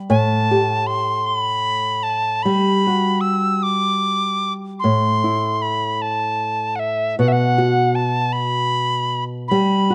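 Close, detailed and lightly reverberant, this short excerpt of a mournful, longing Celtic slow air in A dorian drifts in rubato 6/8 at about 51 BPM, as a bright, reedy wooden whistle with chiff, vibrato and tongued notes carries the melody up front over a small, fingerpicked nylon-string guitar whose finger squeaks sound through chords moving from A7sus2 to Gmaj7, Am and B5.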